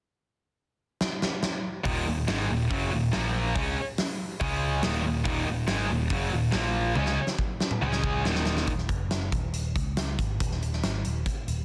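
Hard rock at 141 BPM in Eb minor, heavy and aggressive, this short cut opens with a big, natural-sounding acoustic kit rolling a fill from 1.0 seconds, joined by a punchy, growly picked bass and two bright picked electric guitars, one high-gain and distorted up front, the other overdriven, both playing a riff over Ebm, Bb5 and Db5. The guitars drop out at 8.7 seconds after a second drum fill, leaving drums and bass to carry the final stretch toward an Ebsus4. Light reverb and small-room ambience sit under a dense, heavily limited modern master.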